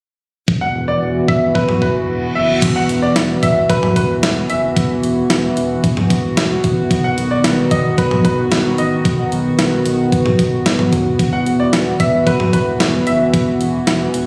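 A straight 4/4 pulse at 112 BPM drives this nocturnal, cool synth-pop excerpt, set by a clean 12-bit digital drum machine with a thumpy kick, medium-tuned snare, hi-hat, toms and crash, its sampler-style hits sitting up front with the small-room character of a re-recording. Beneath it, a round analog bass mixes sawtooth and sine tones into a deep, dark foundation with a fast attack and sustained notes. A chorused pulse-width pad, detuned and shimmering with a retro flavour, holds slow-attack chords up front, moving from Esus2 to B at 6.9 seconds and back to Esus2. A bright grand piano carries a brilliant, polished second line with short sustain and delay, high above the pad. A brief electronic reverse cymbal bridges the opening passage into the next section at 2.6 seconds, and the whole mix sits in a moderate recital-hall ambience with the compressed, slightly roomy feel of a phone recording.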